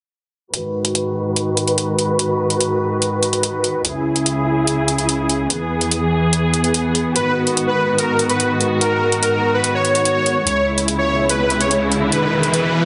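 Heavy and chaotic, this short cut from a longer heavy wobble dubstep piece moves at 145 BPM in a half-time 4/4 feel, set in G# minor. A muted studio string section, veiled and distant with bowed vibrato, holds sustained chords from G#m7 through C#m to E, its low-pass filter sweeping across the whole passage. Metallic, layered electronic hi-hats run alongside from the start, carrying the roomy bite of a small space. At 7.2 seconds a soft, detuned supersaw enters with a smooth, evolving melody set in dub echo, and an electronic riser builds from 11.1 seconds to the close. The sound is heavily compressed and radio-like, capped in the top end and lightly touched with reverb.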